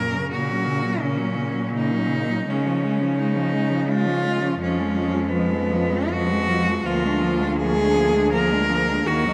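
Four bowed cellos sound together from the start in this melancholic, elegiac classical fragment for cello ensemble, moving in a rubato 3/4 at roughly 72-87 BPM. A clear, focused cello carries the lyrical melody up front with vibrato, while a rich, smooth cello sings a second line in the background, another plays close, even accompaniment, and a clear, focused cello holds the bass. A huge, wet reverb sets the ensemble in a vast, echoing space as the harmony passes from F#/A# through C# to Bb7/D by 6.9 seconds.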